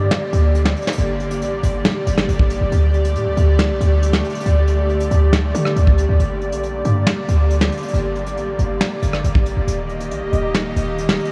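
A breathy, detuned pad with chorus holds sustained chords alongside a short, punchy 808-style bass from the opening moment, setting a menacing, brooding tone for this half-time trap and hip hop excerpt. A soft brush kit of hi-hat, tight kick, rim click and snare sits up front with a dark, smooth small-room sound, while the chords move from Gm through Dsus4 and back to Gm before landing on Eb. The mix is soaked in a huge ambient reverb that gives it a dreamy haze.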